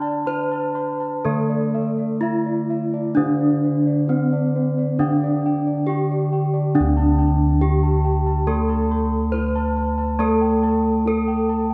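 Shimmering and ceremonial, this short Javanese gamelan passage in a straight, unhurried 4/4 is cut from a longer piece, with all four parts sounding throughout its 11.7 seconds as it moves from an opening section into a second one at 6.7 seconds. Up front, a bronze metallophone carries the melody with a ringing, airy tone struck by a wooden mallet, its paired tuning producing shimmering beats, while a second metallophone plays a dark, smooth accompaniment under a horn mallet. Bossed gongs add round, beating arpeggios above and a bass line below, their tone carrying a boxy small-room character, and the whole ensemble is heard from further back in a wet concert hall.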